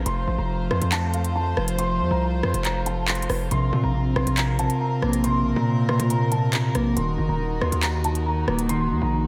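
Cold and dark, this short cut from a longer drill track moves at 139 BPM in a half-time 4/4 feel, its chords shifting from F to Bbsus2 at 3.5 seconds and on to Ebm at 7.0 seconds. A dark concert grand piano carries the melody high in its range, its boxy, intimate tone with audible action noise softened by ensemble chorus, a low-pass filter and analog delay. Beneath it, a rich studio string section holds sustained, bowed chords that sound pure, floating and distant. The hard-hitting 808-style bass sits up front with a punchy, heavy sine tone, a fast attack and a decaying tail, while the electronic drill kit adds crisp hi-hats, handclaps and rim clicks re-recorded in a large room. At 3.5 seconds a mellow electric guitar joins with clean, fingered accompaniment, given a lush chorus and a low-pass filter. Moderate plate reverb soaks the whole mix in a dreamy haze.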